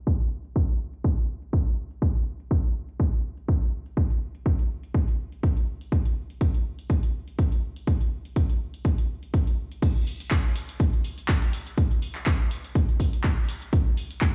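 A dulled, cassette-tape sound carries this deep, late-night house fragment at 123 BPM with lightly swung sixteenths, as if played through a big sound system in a bare stone room and muffled by a low-pass filter. A layered, punchy electronic kick sits up front, while a tape-warm analog drum machine, re-recorded in a small room, adds filtered crash, handclaps, hi-hat and shaker further back. A filter sweep runs through the opening until 9.8 seconds, where the groove drops into its second section and runs to the cut at 14.3 seconds.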